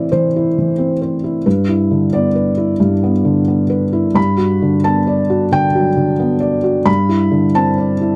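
A felt-muted upright piano plays alone from 0.0 to 8.2 seconds in this hopeful, tender contemporary classical fragment, moving with a rubato feel around 89 BPM in G major across a range from G2 to B5. Its muted, boxy tone sits up front and intimate, with audible action noise caught by close, detailed microphones and a light touch of reverb. The harmony drifts from Amadd9 through Em7/G and Gmaj7 before settling on Cadd9/G.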